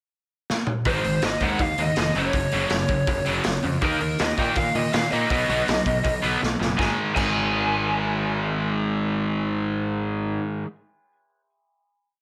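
Moderate studio reverb gives this short, rowdy punk rock piece a lively space, running at 162 BPM in a straight 4/4. The raw garage drum kit comes in first with a fill, its punchy kick, medium-tuned snare, toms and dark cymbals pumping in a small room, gritty and saturated with a rolled-off top as it drives a fast punk groove. At 0.9 seconds the double-tracked distorted electric guitar pounds out palm-muted eighth notes up front, while the fuzz picked electric bass growls underneath in bright, driving eighth notes. Above them, the lead guitar through a small cranked amp plays a lo-fi, overdriven, motif-based melody with digital delay, its tone dark. The verse moves through Ab, Gb5, Eb5 and B, and another drum fill leads into a final Ab5 chord at 6.8 seconds, which the guitars and bass hold after the drums stop at 7.3 seconds.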